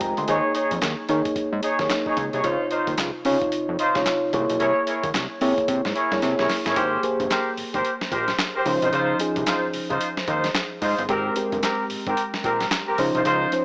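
A mellow FM electric piano with chorus, a fat, detuned sawtooth analog bass and a gritty, pitched-down sampler-style drum kit of thumpy kick, snare, hi-hat and handclaps open this bouncy, confident new jack swing excerpt at 111 BPM, swung on the 16ths. From 0.3 s, an up-front vintage horn section with light vibrato adds stabs through digital delay over chords such as Eb7sus4, Dbmaj9 and Abmaj9. A drum fill at 6.2 s leads into the second section at 6.8 s, all set in a lush hall reverb with a small-speaker character.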